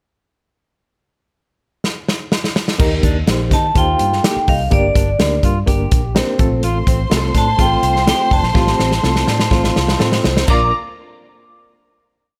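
A straight 4/4 backbeat soul groove at 125 BPM drives this short, uplifting 1960s-style soul piece in Bb major, with the punchy, up-front country drum kit opening on a fill at 1.8 s before the band arrives. A dark, foam-muted fingered bass plays a syncopated line with chromatic approach notes, a reedy, slightly out-of-tune electric piano sounds quarter-note chords with fast tremolo, and a slightly broken-up, lo-fi guitar repeats a picked figure, while a hard-mallet vibraphone rings out call phrases from 3.5 s. A lush, bowed violin section adds long high lines from 6.6 s, a second drum fill leads into the closing Bb chord, and little reverb keeps the sound close and dry.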